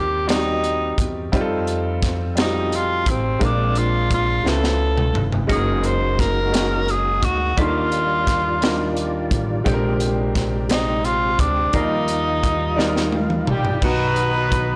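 Hopeful and soulful, this fragment of a slow gospel piece sways in 6/8 at 58 BPM in Eb major, with chords such as Gb69 and Ebmaj9 giving it a rich, jazzy glow. A breathy tenor saxophone carries the melody up front with intimate subtone, vibrato and scooped notes, set in a slapback echo. Beneath it, a vintage-sounding grand piano supplies smooth accompaniment, and a woody, thumpy upright bass, plucked on gut strings and colored with tube saturation, anchors the low end. A crisp fusion drum kit with a punchy kick and high-tuned snare sits close in a small, pumping room and plays a pair of fills. At 5.5 seconds a round, percussive tonewheel organ joins in the background with slow rotary swirl and chorus vibrato. The organ adds a fill of its own, and as the saxophone finishes at 13.5 seconds a mellow, distant horn section in octaves takes over the melody, all within a blown-out, overdriven recording with light reverb.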